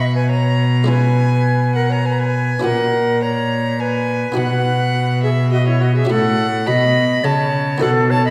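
Heard in a recital hall with a generous, lingering reverb, this brief fragment of a baroque-style sonata movement in triple metre feels radiant and dance-like. A single period-style violin with gut strings and light vibrato carries the melody high above an airy, tongued concert flute with its own vibrato on the second line, while a close, up-front cello with a reedy, gut-string tone anchors the bass. Set back in the mix, a buff-stop harpsichord plucks a muted, lute-like, dry accompaniment in the French style, and all four parts play together for the full 8.3 seconds.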